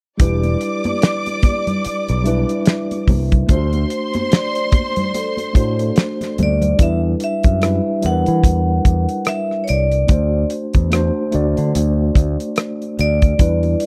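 Silky and cinematic, this short cut from a longer piece is lush 1970s-style soul in E minor at a relaxed 73 BPM, with a gentle sixteenth-note swing over chords moving between Em7 and D7. A damped 70s drum kit sits up front with a fat snare, tight kick, hi-hat and rim click, while a punchy, growly fingered electric bass drives the low end and a mellow, clean tine electric piano fills in the harmony through its built-in speakers. In the opening half, a bowed studio string section adds a smooth, vibrato-rich second line until 6.3 seconds, alongside high-tuned congas struck with hard hands and a soft-mallet vibraphone glowing quietly in the background. At 6.4 seconds a hard-mallet vibraphone takes over the melody, its metallic, ringing tone and slow motor vibrato carrying a boxy small-room character. The recording is dry and close, with a small room ambience that keeps the groove intimate.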